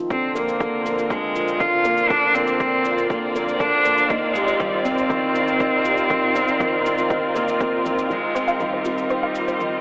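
Hypnotic and moving, this piano and strings electronica, cut from a longer piece, runs at 120 BPM in F dorian: a felt-muted upright piano riff with audible action noise and digital delay plays alongside an intense, clear solo cello melody and dark, woody symphonic string chords up front, while a round analog bass pumps in the background until 8.0 seconds, an overdriven punchy electronic kick and faint shaker keep the pulse, and a very quiet detuned sawtooth pluck with chorus adds arpeggios from 8.1 seconds, the whole set in a lush hall reverb with a telephone-like tone.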